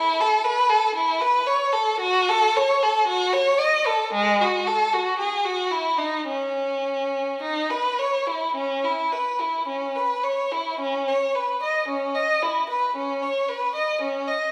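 Radiant and dance-like, this fragment from a baroque-style suite movement features a single unaccompanied violin played with free, rubato timing in 4/4 and a tuning slightly below modern pitch. The bowed line is clear and expressive, colored by vibrato and gliding portamento, and sits up front yet slightly distant in a reverberant recital hall. Partway through, at 10.8 seconds, the music moves into a new section that carries on until the cut at 14.5 seconds.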